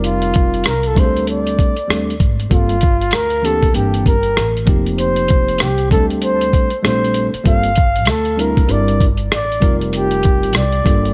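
A swung 97 BPM jazz-hop groove in 4/4 comes from a gritty, compressed sampler-style drum kit with a thumpy kick, hi-hat and rim click sitting up front, beneath a woody pizzicato upright bass and a clean tine electric piano cycling through F9sus4, D7sus4, Gm11 and C9/G, while a breathy, whispered flugelhorn with vibrato and tape echo carries the intimate melody from 0.1 seconds in this mellow, smoky hip hop excerpt set in a small room.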